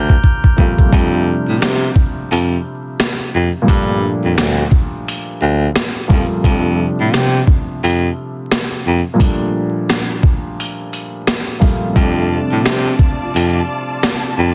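A swung boom-bap groove at 87 BPM in 4/4 drives this soulful hip-hop excerpt in F major, opening with a brief drum fill before settling into its main section at 0.9 seconds. The sampler-style kit sits up front, compressed and gritty, with a thumpy kick, a high-tuned snare and hi-hat, all re-recorded in a large room. A clear, close-miked baritone saxophone carries the bass line in a jazz style with vibrato, sitting just as far forward as the drums. Beneath them, a woody, smooth upright piano with a vintage, tape-tinged character plays the accompaniment, rocking between Gm9 and F6 chords. At 12.0 seconds a bright, lush studio string section enters with bowed, intense sustained chords rich in vibrato. Light reverb, vinyl crackle and a dense, heavily limited modern master give the whole piece a warm, crate-dug feel.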